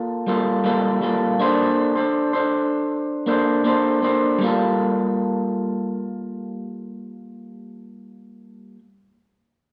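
Indie pop in a hazy, mellow mood, this short fragment of a longer piece features a lone electric guitar through a small old amp, bright, twangy and slightly broken-up with a warbly pitch drift, sitting up front in a wet recital-hall reverb as it moves from Gm9 to Bbmaj9 and returns to Gm9 at 4.4 seconds.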